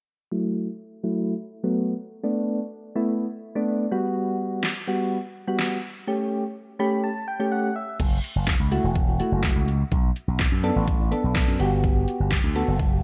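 Light reverb and a digital ambience frame this energetic, bittersweet dance-pop excerpt, cut from a longer piece and moving at 125 BPM in a straight 4/4. Soft, round electric-piano-like synth keys open at 0.3 seconds with a gentle, mellow tone shaped by chorus, tremolo, sidechain pumping and a low-pass filter sweep, cycling through F#m7, Bm7, Gmaj7 and A7 before closing the first passage with a short fill. At 4.6 seconds a layered, overdriven electronic pop drum kit arrives up front, with a knocking kick, fat snare, metallic hi-hats, handclaps and crash cymbal. The second section begins at 8.0 seconds, when a bright, punchy slap bass with an envelope filter enters, direct and amped, pumping with the sidechain beneath the returning F#m7, Bm7 and Gmaj7 changes.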